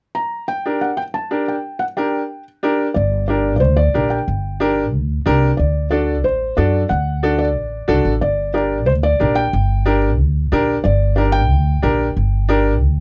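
Latin music with a passionate, danceable drive, this short passage is taken from a longer piece and moves in a straight four-beat feel over chords that shift from Gm to D and back to Gm. A felt-muted upright piano carries the melody in a soft, mellow, intimate voice. Its thick felt dulls the tone, and its action noise stays audible up close. Beneath it, a second upright piano supplies the accompaniment in the middle register with a bright, brilliant, open sound, sitting a touch louder than the melody. At 3.0 seconds a pizzicato upright bass enters, woody and dark with steel strings, anchoring the low end up front. The close, dry 1970s-style studio sound carries only light reverb, keeping all three instruments near the listener.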